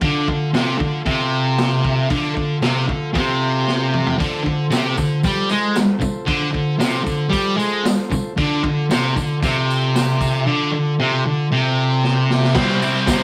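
A straight 4/4 garage rock groove drives this menacing, swaggering excerpt, with a bright, double-tracked fuzz guitar riff up front over a punchy vintage drum kit with dark cymbals and fills at 3.7 and 12.0 seconds, a mellow combo organ holding sustained chords in the background, and a jingly tambourine joining at 4.2 seconds, the whole captured as a rough rehearsal-room recording in a small, reverberant room.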